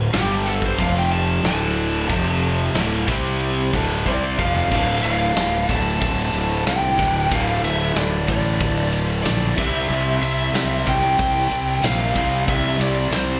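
A straight 92 BPM hard rock groove in D minor drives this heavy, menacing excerpt cut from a longer piece, where a dark, lo-fi lead guitar through a small cranked amp solos over the first 4.7 seconds before a drum fill ushers in the next section, backed throughout by a crunchy overdriven guitar riff and a high-gain distorted guitar riff, both bright, double-tracked and set back with slapback echo, a growly fuzz fingered bass up front, and a big acoustic rock kit with bright cymbals and a punchy kick, all heard as a live gig through the venue's PA with club reverb.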